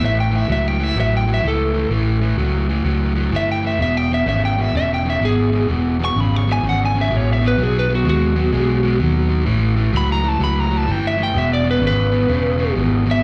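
Swaggering and rollicking, this electric blues shuffle in E major swings along at 127 BPM as a lightly driven, slightly broken-up lead guitar with slapback echo solos throughout the 13.2 seconds over a crunchy overdriven guitar riff and a dark, round, punchy foam-muted bass, all heard through a live club PA with light reverb while the chords move from A7 to E, B, A7 and back to E.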